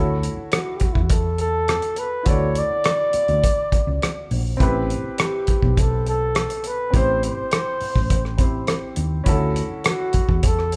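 A straight 4/4 groove at 103 BPM sets this lush 1970s-style soul excerpt in D major, with a cloth-damped, thuddy drum kit up front on hi-hat, tight kick and rim click, while a round, punchy hollow-body short-scale bass and an intimate concert grand piano with audible action noise support the harmony moving from Dmaj7 to Am7 and back. A mellow flugelhorn enters at 0.5 seconds to carry the smooth, jazz-style melody with gentle vibrato and a soft attack. The band plays live in one large studio, its moderate reverb giving the whole a warm, smooth glow.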